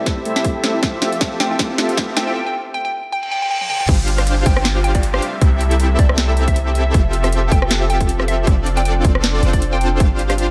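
Future bass at 157 BPM in C major with a half-time, lightly swung feel, playful and lush, this cut from a longer piece builds with a filter sweep on a soft, detuned supersaw riff, a brief round thumb-piano-like pluck arpeggio that stops at 2.3 seconds, and a break before dropping at 3.9 seconds, while from the opening a pumping sidechained motion runs through everything: a hollow, bouncy square pluck carries the melody through gritty 12-bit sampler texture, chorus and delay, a deep, boomy 808-style bass and a hard-clipped, overdriven kick sit up front, a trap kit adds a sharp snare and metallic hats, veiled muted strings hold distant sustained chords, and risers, a reverse cymbal and a downlifter drift in the background over light digital ambience.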